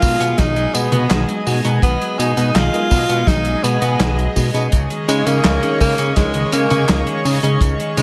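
A breathy, up-front tenor saxophone carries a jazz-style solo melody with vibrato, subtone and scooped notes, trailed by tape echo, over a moody, nostalgic synthwave groove in straight 4/4 that moves from Abm7/Cb to Dbsus2 at 4.7 s. A fat, saturated analog bass and a shimmering, retro pulse-width pad both pump against the beat, while a clean, picked electric guitar plays arpeggios and a soft, round FM electric piano adds stabs with chorus and phaser, the two sitting in the background. A dry, tight kick drum, which stops at 7.8 s, plays alongside a dark soul drum kit of snare, hi-hat, handclaps, tambourine and toms with gated reverb, all in a lightly reverberant studio sound with lossy compression artefacts.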